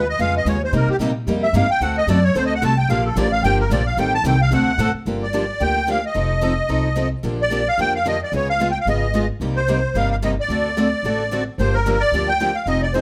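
A musette accordion opens this bittersweet, swinging stretch of acoustic string swing, carrying the melody up front with a reedy, shimmering tone and a touch of plate reverb, joined from the first moment by a picked steel-string acoustic guitar and an upright bass. The accordion takes a solo through the opening 5.1 seconds, its mid-forward voice sitting over a lilting swung pulse in four. A second picked acoustic guitar enters at 0.7 seconds and sits in the background, so the two guitars provide a warm, concert-style accompaniment beneath the lead. The pizzicato upright bass, strung with gut, is woody, dark and thumpy, standing up front alongside the accordion. After the first passage, the piece moves into a new section that runs through to the close of this cut from a longer performance, with minor-key harmony shifting among chords such as Gm7, D7 and Cm7, all heard in a moderate studio room.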